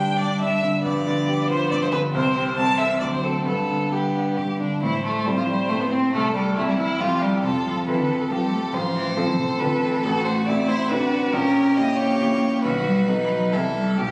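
Captured on a phone in a reverberant recital hall with club chatter around it, this stormy, urgent fragment of a quick classical-period piano quartet movement in a rubato triple time sets a focused, distant single violin melody with vibrato over a rich second violin and a smooth, close cello, both bowed with vibrato, while an intimate baby grand piano with audible action noise accompanies up front, before the music turns darker into a new section at 4.8 s that moves through tense diminished harmonies.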